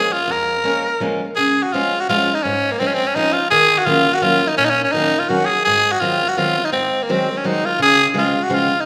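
A musette waltz in a lilting three, this short excerpt cut from a longer piece has a whirling, nostalgic mood. A raspy tenor saxophone carries the melody up front, its edgy, gritty tone shaded with vibrato and a pop-style delivery as it takes the solo role throughout. Beneath it, a picked steel-string acoustic guitar supplies the accompaniment, sitting lower in the mix with a warm, acoustic sound and audible finger squeak. The harmony moves from Bbm7 through Dbmaj7, Ebm7 and Ab7 before settling back on Dbmaj7 near 7.8 seconds. Both parts ring out in a reverberant recital hall, giving the intimate duo a spacious, auditorium-like glow as it runs to about 8.9 seconds.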